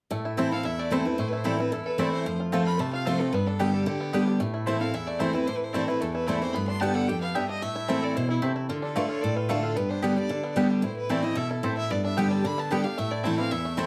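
Heard from further back in a wet-sounding studio room, this fast bluegrass excerpt in A minor runs at 224 BPM with a lonesome, haunting mood, moving between A minor, F and G before turning toward D minor at 8.7 seconds. A bright, up-front dreadnought guitar picks the accompaniment from the start while a twangy, fingerpicked banjo carries the melody, joined at 0.5 seconds by a biting, earthy bowed fiddle with light vibrato. A mellow, round mandolin with doubled strings adds picked stabs from 0.4 seconds.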